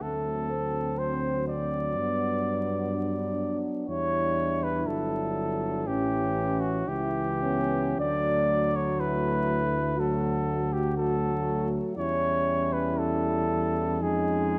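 A light reverb and vinyl crackle surround close, detailed microphones in this short cut from a longer classical piece, a hymn-like work for brass band that moves in a slow, rubato 4/4 at 51-63 BPM. Up front, a warm flugelhorn with light vibrato and a smooth top carries the melancholic, solemn melody, while a dark French horn section sits distant and roomy in the background on a second line. A clear euphonium, also distant and roomy, and a clear, present trombone in the background fill in the accompaniment. A mellow tuba with gentle vibrato anchors the bass up front, and all five parts sound together from start to finish. The harmony moves from D7 through Gmaj7, Em7 and A7 to D, then turns to C#dim/E at 12.0 seconds before closing on C#/E# at 14.0 seconds.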